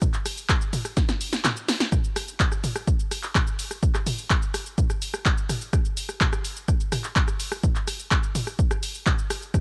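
A straight 4/4 pulse at 126 BPM drives this short techno clip, cut from a longer piece and built entirely from drums. An up-front analog kick hits with a punchy, tape-warm thump, while an analog drum machine fills in handclaps, hi-hat, rim click, shaker, snare drum and toms. The snare, clap and hats carry a short touch of room, though the recording as a whole stays dry and gritty, with the texture of cassette tape. A drum fill arrives at 1.0 seconds, and the kick drops out from 1.4 to 1.9 seconds before the groove resumes. The mood is driving and hypnotic.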